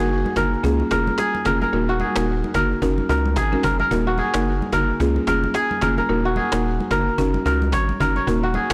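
A crisp, ringing kora riff with digital delay sits up front in this hypnotic, sultry afrobeats excerpt at 110 BPM in Eb minor, carried by a woody, buzzing marimba played with soft mallets, a deep, saturated sine sub bass, a snappy, close cajon played with gentle hands, and bright congas set back in a live room, as Ebm, Bbm7 and Gb6 cycle under a swung 16th-note feel within a blown-out, overdriven recording touched with light small-room reverb.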